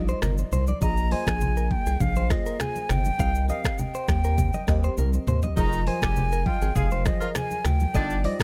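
A round, deep analog bass sits up front in this sultry, mellow afrobeats excerpt at 101 BPM in a straight 4/4, its fast attack and sustained, wave-folded tone giving the groove its low anchor. Over it, a hollow silver concert flute carries the melody with a pure, close-miked sound and vibrato, while an FM electric piano layered with a soft pad supplies lush, dreamy accompaniment coloured by chorus and phaser. A bright, clean electric guitar recorded direct plays a compressed, picked riff washed in spring reverb and delay, and an electronic afro-pop kit of deep kick, dark hats, finger snaps, rim click, shaker and toms drives the rhythm, with thin-skinned congas struck with hard hands in the background. After a drum fill from 5.0 to 5.6 seconds, a smooth horn section enters with an octave-doubled second line. The harmony moves from Ebmaj7/G through Bb7sus4 and Cm7 to Fm7, and the dry mix keeps the whole arrangement intimate and close.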